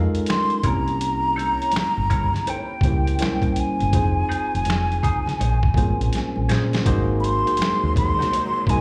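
A breathy, mellow silver flute sits up front with the melody, close-miked with a touch of vibrato and a slapback echo, floating between G5 and C6 in this soulful, introspective neo-soul and R&B excerpt at 82 BPM with a swung 16th-note feel. Beneath it, a worn, slightly out-of-tune tine electric piano, lightly overdriven through a combo amp with subtle chorus and slapback echo, carries the chords from Bbm11 through C7b9, Fm7 and Bbm9. A growly, round fretless bass holds the low end while a gritty, pitched-down boom bap drum kit with a thumpy kick, medium-tuned snare, hi-hat and finger snaps punches through, adding a fill from 6.1 to 6.9 seconds. Quieter touches fill the edges: a clean, scooped electric guitar with wah, warbly pitch drift and slapback echo traces a second line, and very quiet, damped congas with a vintage, band-limited tone join at 1.4 seconds. At 6.8 seconds a lush studio string section enters in the background with bowed, sustained chords and expressive portamento as the harmony moves to Ab7, all heard as if through a club PA with its reverb.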